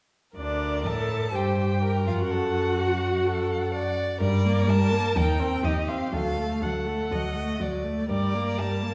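Urgent and stormy, this quick classical-period movement for string quartet moves at 124 BPM in 4/4 with a rubato feel, and all four bowed players sound together from 0.4 to 8.9 seconds in a passage cut from a longer piece. The first violin carries the melody between D5 and A5 with a rich, expressive tone, soft attack, vibrato and portamento, while the second violin plays a close, warm second line from F#4 to Eb5 with the same soft attack and gliding expressiveness. The viola fills in the accompaniment with a smooth top, vibrato and portamento. Beneath them, the cello holds the bass from D2 to A2, focused and up front, with vibrato and a smooth top. The harmony moves from Bbmaj7/D through C5/G, D/F# and Gm to Cm/Eb and D before settling on Gm at 8.1 seconds. A wet recital-hall reverb places the quartet further back in the room, lending the urgent, restless passage a spacious glow.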